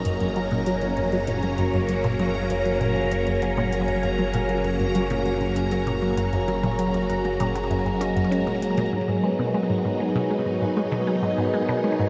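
A swirling, vintage string machine sits up front with bright, sustained chords under a chorus and phaser, opening this mysterious, expansive slice of ambient, sequencer-driven space music at 98 BPM in a straight 4/4. Around it, a ringing vibraphone with slow motor vibrato plays delayed arpeggios, a squelchy, resonant blip pluck carries a phased and delayed riff, and a bubbling stepped-filter texture adds a high, chorused shimmer. A fat analog bass and overdriven electronic hi-hat and congas in the background hold the F# section until both stop at 8.9 s, when the harmony moves to G#m7, all drenched in a dreamy reverb with an 8.1 s decay.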